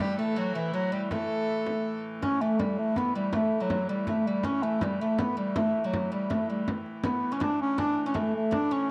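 A festive, ancient-sounding medieval dance in triple time opens with a mellow bass clarinet carrying the melody up front, alongside a bright, woody oud on a second line, an even, wheel-bowed hurdy-gurdy drone and a rich, distant fiddle that drops out at 2.0 seconds. A close, dry frame drum played with soft hands enters at 0.9 seconds, and a wet spring reverb colours the room in this short passage cut from a longer piece.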